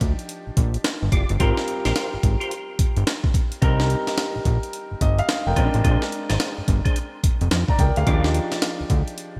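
Bright, 1980s-style digital production with light reverb frames this flirty, bouncy new jack swing clip in Eb major, moving at 108 BPM with a swung 16th-note feel over Ebmaj9, Abmaj13, Cm7 and Bb9. Up front, a gritty, pitched-up sampler-style breakbeat kit with a thumpy kick, a high-tuned snare and gated reverb sits alongside a fat, saturated analog bass with a filter pluck. A smooth, vintage grand piano plays accompaniment underneath, while a mellow, percussive tonewheel organ adds stabs through a fast rotary speaker from 1.1 to 8.3 seconds.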